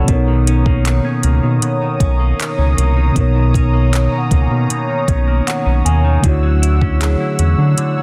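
A mellow tine electric piano, a detuned sawtooth pad with chorus, clean direct-recorded guitar arpeggios through phaser and delay, and a round, deep analog bass open this tender, smooth contemporary R&B fragment in B major at 78 BPM, joined at once by an up-front electronic drum kit of soft kick, metallic hi-hats and handclaps, while a delicate, bell-like celesta with delay slips into the background at 0.9 seconds, the electric piano adds a fill from 4.7 seconds, and the harmony moves from Bmaj9 to Dmaj9 at 6.2 seconds in a dry, dense, heavily limited modern mix.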